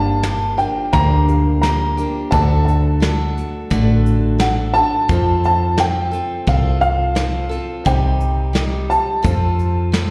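Honky-tonk and classic country in G minor at 87 BPM, this heartbroken, dusty excerpt sets a dark, mellow upright piano melody with slapback echo over a faint, boxy second upright piano, a full-bodied picked dreadnought acoustic guitar also carrying slapback, a round, up-front fretless bass, and a soft brush kit with a rolled-off top entering at 0.2 seconds, all heard through a venue PA in a small room with recital hall reverb as the chords move from Gm7 through D, F and Cm.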